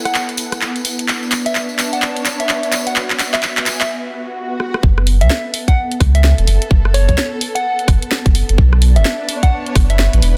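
A dense, heavily limited mix with light reverb carries this moody, late-night two-step UK garage cut in F# minor at 128 BPM, swung on the sixteenths, where an ethereal detuned pad and lush bowed strings pump under sidechain beneath a round, warbling FM synth lead with chorus and digital delay, a cracking garage kit of handclaps, hi-hat, rim click and snare joined early by a jingly, distant tambourine, until an electronic swell at 4.1 seconds gives way at 4.8 seconds to a drop of thick, saturated sub bass and a tight, up-front electronic kick as the chords move from F#m9 to F#m and then Bm9.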